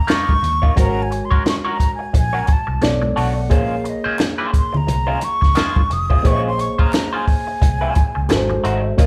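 Smooth and silky, this lush 1970s-style soul passage with a swung groove puts a breathy concert flute up top, playing an expressive, tongued solo with vibrato and lifted highs. Beneath it, a reedy, worn electric piano sounds slightly out of tune through its built-in speakers, while a twangy, compressed electric guitar at the edge of break-up plays a riff through a wah. An up-front compact cocktail drum kit with a high-tuned snare and tight kick anchors the room alongside round, foam-muted fingered bass from 0.4 seconds, bright congas in the background, and very quiet hollow handclaps from 4.2 to 8.5 seconds.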